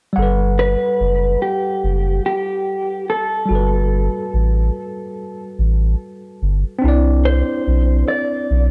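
A swung 72 BPM groove in 4/4 sets a nostalgic, mellow lo-fi hip hop mood in G major, tuned slightly flat, with the chords moving from Gmaj9 to Cmaj9 at 6.8 seconds in this short cut from a longer piece. A worn, slightly out-of-tune tine electric piano enters at 0.1 seconds, softened by a low-pass filter and plate reverb, while a deep, round dub sub bass with tube saturation sits up front from 0.2 seconds. A dark, fingered electric guitar carries the melody from 0.6 seconds through spring reverb and tape echo, all captured in a dry, gritty hardware recording with light reverb.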